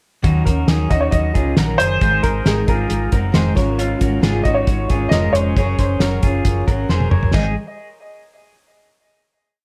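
Jangly indie pop at 135 BPM in Ab mixolydian, youthful and nostalgic, where a dry, thuddy cloth-damped drum kit with a fat snare drives a brisk backbeat under a round, foam-muted bass, a full-bodied fingerpicked acoustic guitar, a slightly broken-up electric guitar ringing lo-fi arpeggios doubled in thirds through digital delay, and a worn, woody, slightly detuned upright piano entering at 0.9 seconds with a motif-based melody, all in light reverb, until a drum fill at 6.9 seconds leads into a final Ab5 chord at 7.3 seconds.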